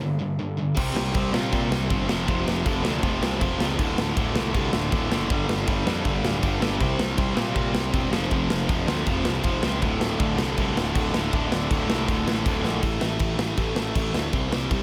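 The sound is dry and close, with little reverb, in this raw, angry punk rock excerpt in D minor at 159 BPM in a straight 4/4. Two sludgy, overdriven electric guitars open alone: one picked riff sits up front with a bright edge, the other warmer and set further back in the mix. At 0.8 seconds a growly, fuzz-soaked picked bass and a big acoustic rock kit crash in together. The kit has a punchy kick, a medium-tuned snare and bright crash cymbals ringing in a large room. The riff cycles through power chords on G, C, F and D before a drum fill at 12.6 seconds. At 12.8 seconds the background guitar drops out and the remaining parts push onto an A power chord.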